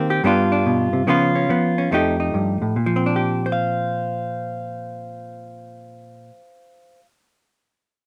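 A hollow-body electric jazz guitar plays alone from the start, its dark, clean, fingered tone sitting up front in a close, detailed recording with light reverb. This swinging, sophisticated solo jazz fragment moves at 142 BPM in 4/4 with a 66% eighth-note swing, tuned to A4 = 437 Hz and ranging from F2 to F5. Its harmony passes through G7, Db7 and F9 before settling on Bbsus2 at 2.8 seconds, and the guitar stops at 7.1 seconds.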